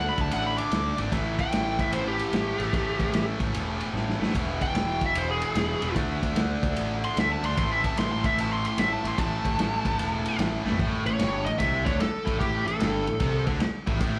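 A smooth, overdriven lead guitar solo opens this raunchy, driving blues rock and southern rock excerpt with a swung feel, riding over a tight, double-tracked distorted riff guitar and growly fuzz bass, while a muffled, lo-fi vintage drum kit enters at 0.2 s, throws in fills around 3.9 s and 10.6 s, and pushes into a new section on A7 at 10.8 s, the guitars carrying slapback echo and the whole band heard live through a club PA with light reverb.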